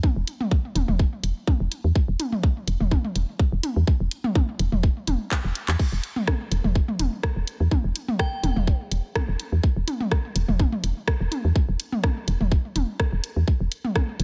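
A tight, up-front electronic kick and produced electronic toms with delay open this cool, quirky minimal techno excerpt at 125 BPM in E minor, with a 16th-note swing. A soft, round, dark FM bass with sidechain pumping joins them, along with a layered garage kit of crash, handclaps, hi-hat and rim click, and a drum fill arrives at 5.3 seconds. At 8.2 seconds a brief, crystalline FM synth bell on G5 flickers through with chorus, phaser and delay, all in a dry mix.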